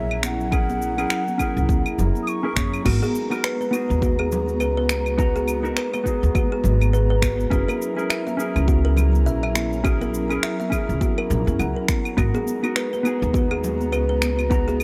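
The woody, up-front upright bass anchors this relaxed, smooth sunset chillout excerpt in G# minor at 103 BPM, swinging lightly on the sixteenths as the harmony moves between F#7 and G#m9. A mellow baroque flute with vibrato opens the melody through digital delay until 2.9 seconds, when a bright, ringing kalimba with vintage 12-bit sampler grit takes over with delayed arpeggios, while a dark, clean electric guitar under a filter sweep and an airy, breathy pad with chorus fill out the accompaniment. A deep electronic kick and a layered deep house kit of cabasa, claves, crash cymbal and finger snaps carry the groove, with high-tuned congas in the background and a small room's light reverb around it all.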